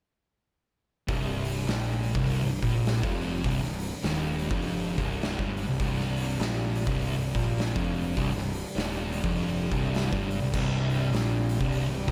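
Sludgy and brooding, this short cut from a longer stoner and doom metal piece crawls along at 102 BPM in 4/4 with a swung eighth-note feel, sitting on a C minor chord. At 1.1 seconds the band arrives together: a thick, dark fuzz guitar, double-tracked and up front, grinds out a low riff between C2 and Bb2, while a fuzz-toned picked electric bass, overdriven and captured both direct and amped, adds weight an octave lower. An oversized, low-tuned acoustic drum kit drives the groove with a punchy kick, a medium-tuned snare, hi-hat and dark crash cymbals, its saturated, gritty sound pumping in a big room. From 1.5 seconds an analog drone of sawtooth and pulse waves holds sustained chords in the background, its slow attack, long release, pulse-width modulation and chorus giving it an evolving glow beneath the riff. A studio reverb wraps the mix, and all four parts ring on together until 12.1 seconds.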